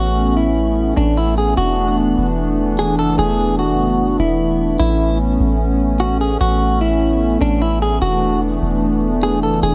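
A clean, compressed electric guitar carries the melody through digital delay from the first moment, over a hollow, flute-like pad holding sustained chords with chorus and a round, sine-toned 808-style bass. This is an atmospheric cloud-rap hip hop piece in A major at 149 BPM with a half-time feel, floating and blissful as the harmony moves between Aadd9 and E7sus4. All three parts play together throughout the 9.7-second section, set up front in light reverb, cut from a longer piece.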